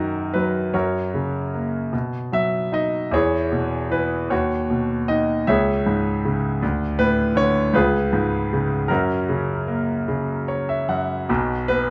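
A bright, up-front grand piano opens this peaceful classical excerpt alone, moving through a slow, lyrical 6/8 with gentle rubato and uneven beats. Its brilliant, natural tone sits in a small room with moderate reverb as the harmony passes from F-sharp through B, E and C-sharp minor before settling back on F-sharp. A short piano fill at 10.1 seconds rounds off the warm passage.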